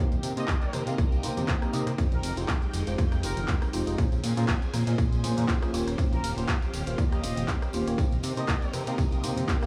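A punchy, overdriven electronic kick sits up front in this filtered disco house groove at 120 BPM, entering at 0.5 s with a slight 16th-note swing. Also up front, a fat analog bass built from detuned, wave-folded sawtooth and triangle tones moves under a filter sweep. The layered house kit adds handclaps, hi-hat, ride, rim click and tambourine with a gritty, roomy character, while a very quiet acoustic tambourine and conga part patters with soft hands. In the background, a tine electric piano heard through a combo amp with phaser, a clean, scooped picked guitar riff with analog chorus, and a swirling, warbling string machine with a slow attack fill out the chords Cm7, Fm9, Bbm9 and Eb13 before returning to Cm7. A mellow, close-miked trumpet section with light vibrato carries the melody from 0.4 to 8.9 s, colored by 12-bit sampler grit and trailed by dub echo. Sidechain pumping on most parts and a dry, close sound give this cut a sensual, nostalgic feel.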